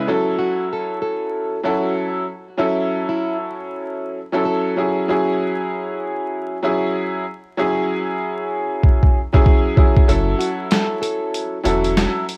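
This reflective, gritty boom-bap hip-hop fragment opens on a bright upright piano, up front and woody, with a worn, slightly detuned character, playing accompaniment over a shuffling swing. Almost at once a small, fingerpicked nylon-string guitar carries a quiet melody, its fresh strings showing a little finger squeak and trailing tape echo. The harmony moves from F#m7 to C#m/F# and back, while the piano and guitar both sit behind filtering and a cassette-tape haze. At 8.8 seconds a compressed, pitched-down sampler drum kit arrives with a fill, its thumpy kick, medium-tuned snare and hi-hat up front in the mix. From 10.1 seconds the guitar returns and a deep, round, soft sub bass joins under a tube-saturated glow for the closing break. Small-room ambience and vinyl crackle give the whole home-cassette recording a dusty, intimate feel.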